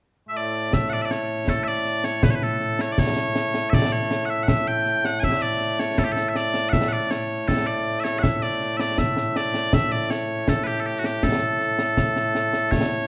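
A straight 2/4 piece at 80 BPM in A mixolydian carries this ceremonial, proud Scottish pipe music, where loud, piercing bagpipes hold a continuous, up-front solo melody from 0.3 seconds while concert snare and bass drum, close and dry with dark cymbals, enter at 0.7 seconds, all played live in one room with moderate large-studio reverb in a passage cut from a longer piece.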